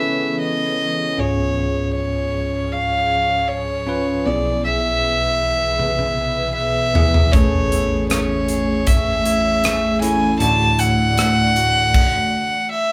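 A soft-bowed violin floats up front, carrying the melody of this emotional, melancholic pop ballad at 78 BPM, with a bell-like electric piano accompanying and an ethereal, warbling pad with chorus and reverb sustaining chords in the background. The polished studio drum kit arrives at 5.8 s with a fill, its bright cymbals and punchy kick filling out the groove, and a full-bodied fingerpicked steel-string acoustic guitar joins with arpeggios at 7.3 s as the harmony moves from C#m7 through Amaj7 to Dadd9. The band sounds as if playing live together in a small, wet room, and the arrangement reaches a stop at 11.9 s in this piece cut from a longer work.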